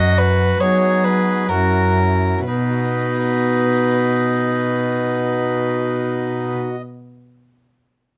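In a rubato 3/4 at 61 BPM that slows over the first 2.5 seconds, this flowing, radiant fragment of a baroque-style sonata movement in B major moves from B over F# through F#7 back to B. A clear oboe carries the melody with light vibrato and a soft attack. Above it sits a violin second line, with the cello playing the bass; both are single bowed players with a rich, reedy, period gut-string tone, placed close and up front. A smooth principal-stop pipe organ supplies the continuo, lingering until 6.8 seconds after the others stop at 6.5, all heard through detailed microphones and light reverb.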